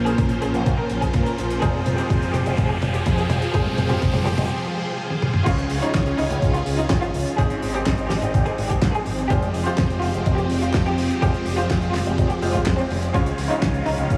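Danceable and melodramatic, this italo disco excerpt sets a lush, vibrato-rich violin melody over swirling, phased string-machine chords, worn baby grand piano stabs, a punchy envelope-filtered fingered bass, a thumpy overdriven electronic kick and a dry 70s kit with a fat snare and handclaps, while a background riser builds from 0.7 to 4.5 seconds into a brief break before the mix, soaked in huge dreamy reverb and vinyl crackle, moves into its second section at 5.5 seconds.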